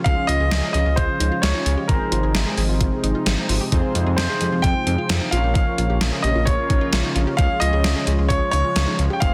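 This synth-pop excerpt moves at 131 BPM in a straight 4/4, with a cool, nocturnal mood. An intimate concert grand piano carries the melody up front, its action noise audible and its tone polished by delay. Beneath it, a smooth, saturated synth bass sits forward in the mix, and a gated 80s digital drum machine punches out thumpy kick, hi-hat and a gated-reverb snare with a tape-softened edge. Bold, fat analog synth brass with chorus and a dark filter sweep fills out the accompaniment from 0.1 seconds. Further back, a sweeping resonant pad holds sustained chords with slow attack and chorus, while a very quiet, detuned unison pluck traces arpeggios. The chords move from Db through Ab6, Fm7 and Bbm before returning to Db, all set in light reverb within a dense, heavily limited modern master.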